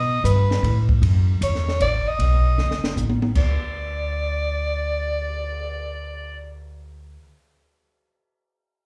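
A mellow soprano saxophone carries the solo melody up front, its soft attack, light vibrato and scooped notes giving the line a smooth top, with a slapback echo trailing each phrase. This is a relaxed, swinging slice of small-group jazz in 3/4 at 154 BPM, cut from a longer piece and heard as a live gig through a club PA with light reverb. The upright bass sits just as far forward, its woody, thumpy pizzicato from gut strings anchoring the low end until 7.2 seconds. A compact cocktail kit adds dry, dark cymbals, a high-tuned snare and a punchy kick, and a drum fill at 2.6 seconds leads into a new section at 3.4 seconds. The harmony moves through B, suspended A chords and an F# power chord before the chords give way.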